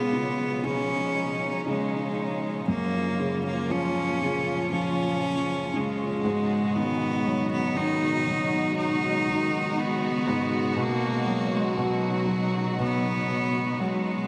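A bright, bowed solo cello carries the melody up front, its biting, slightly nasal and earthy tone shaded by light vibrato as it sings between F#3 and D#4. This heartfelt, hopeful pop ballad moves slowly at 59 BPM in a straight 4/4 in F# major, and this short passage is cut from a longer piece. Beneath the cello, a concert grand piano plays intimate accompaniment in its low register, with deep bass, long sustain, a polished presence, audible action noise and a lush chorus on its sound. A warm studio string section holds sustained chords, bowed with vibrato and expressive portamento, with a smooth top to its ensemble sound. The harmony moves through C#7, F#maj7, G#m7 and B6, and all three parts play throughout the 14.3 seconds. A huge ambient reverb with a 7.5-second tail soaks the whole mix, giving it a dreamy quality.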